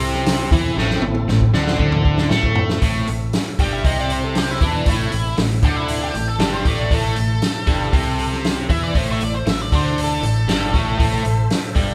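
Recorded live in one large studio room with moderate reverb, this gritty, brooding blues rock and southern rock excerpt puts a punchy, natural-sounding vintage drum kit and a bright, crunchy, double-tracked rhythm guitar riff up front over a warm, foam-muted fingered bass and a very quiet, full tonewheel organ holding sustained chords through a rotary speaker, with a drum fill from 0.8 to 2.8 seconds before a smooth, overdriven lead guitar enters at 3.6 seconds with a wah-coloured solo melody.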